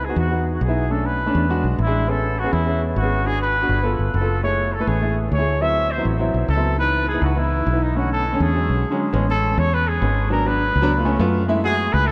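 Bathed in the long, echoing wash of a vast cathedral-like space, this driving, sophisticated Afro-Cuban jazz excerpt sets a distant, lightly vibratoed solo trumpet melody over a punchy, foam-muted fingered electric bass and an intimate grand piano accompaniment with audible action noise, pausing for a break at 8.8 seconds before a brief piano fill from 10.9 to 11.5 seconds.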